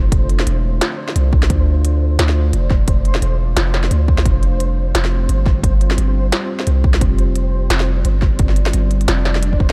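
A dark, warm production with little reverb opens this heavy, brooding half-time drum and bass excerpt at 174 BPM in 4/4, carrying a 58% swing on the sixteenths. A deep, moody pad of detuned sawtooth unison with a sine sub octave sustains chords from the start, its full body softened by chorus and its own reverb and pumped by sidechain, moving from Dm7 to Fsus2 at 4.3 seconds. Beneath it, a long, sine-based 808-style bass sits up front with a fast attack and mellow decay, while a grainy, flickering triangle texture hovers far in the background under its own reverb. From 0.1 seconds an electronic kick hits heavily alongside an industrial kit of clanging snare and crisp hi-hats, both tape-warm and re-recorded in a large room. A faint electronic swell enters in the background at 9.3 seconds as the cut ends.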